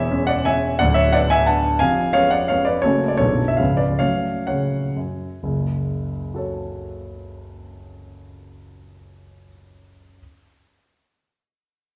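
A warm, polished baby grand piano carries this brief classical fragment alone, its short-sustained tone sitting up front and present even as a wet, large studio reverb places the listener further back in the room. It is a romantic triple-time dance in 3/4 with dotted rhythms, played with rubato at a tempo that moves between 119 and 191 BPM. The mood is wistful yet capricious, with the harmony in F# minor. The piano spans from deep bass notes up to the middle-high register. The music slows down from 2.3 to 5.4 seconds as the harmony settles onto F# minor, and a new section begins at 5.4 seconds. Cut from a longer piece, it lasts just over ten seconds.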